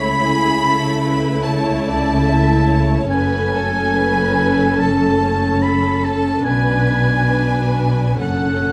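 Sorrowful and moving, this brief cinematic film-score passage for orchestra unfolds in 4/4 with a rubato feel. A violin section carries the melody from the background, its soft attack, vibrato and portamento giving the line an expressive, distant quality. Above it, a roomy oboe in classical style shares a second line with another violin section whose tone stays smooth and even. A lush viola section fills the middle as accompaniment, while a concert harp rings out fingerpicked arpeggios from behind. Underneath, a dark, close double bass section and a focused cello section hold the bass as the harmony moves from A/C# through F#madd9 and Bm to F#m, all set in a moderate scoring-stage reverb.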